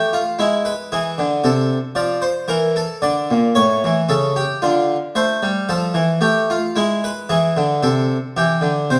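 A solo harpsichord sits up front in a wet recital hall with a 1.5-second reverb, its plucked, brilliant tone sounding full and airy from three sets of strings in the Italian style. This classical, baroque-style two-part invention moves at 113 BPM in a straight 3/4, at once driving and contemplative, with the harpsichord ranging from A2 to D5 across 9 seconds. Its harmony passes through chords such as E7/G#, Am/C, Dm/F and Bb before coming to rest on C at 8.4 seconds, a brief cut from a longer piece.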